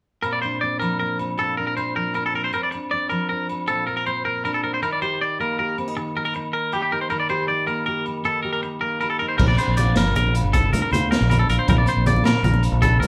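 A bright, twangy electric guitar with a warbly pitch drift plays arpeggios up front from 0.2 seconds, over a dark, full-bodied fingerpicked acoustic guitar with audible finger squeak and distant ringing agogo bells, as this carefree, danceable highlife excerpt moves between Bbadd9 and Eb in a straight 12/8 at 105 BPM. At 9.4 seconds a gritty, saturated breakbeat kit with dark cymbals and a tight kick enters, together with an up-front fingered electric bass and low-tuned, thick-skinned congas in the background. The band sounds as if playing live in one room, bathed in wet studio reverb.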